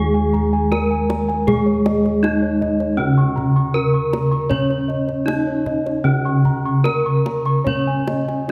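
Two bronze metallophones and a set of low bossed gongs sound together at the very start of this serene Javanese gamelan passage, cut from a longer piece and moving at 72-79 BPM in a straight 4/4. The melody metallophone sits up front, struck with a horn mallet for a bright, airy ring, and its paired tuning produces shimmering beats. Beneath it, the accompanying metallophone uses padded disc mallets for a mellow, soft tone that carries the same shimmering beats. The bossed gongs have a round, beating bronze voice: one set anchors the bass, and a higher set joins at 0.1 seconds with arpeggios. The kendang enters at 0.3 seconds, tight and close under hard hands. A long concert-hall reverb wraps the ensemble in a dark, warm glow that suits the shimmering mood.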